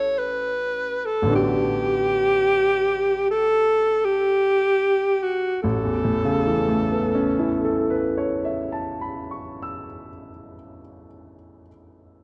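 Dark, softly reverberant production frames this slow, rubato impressionist classical passage in 3/4 and A mixolydian, a pastoral, luminous fragment cut from a longer piece, where an up-front alto saxophone sings a warm, vibrato-rich classical melody until 8.8 seconds over natural-sounding baby grand piano chords moving between Aadd9 and Gmaj7/A, the tempo easing through the opening 5.6 seconds and the piano ringing on alone until 12.2 seconds.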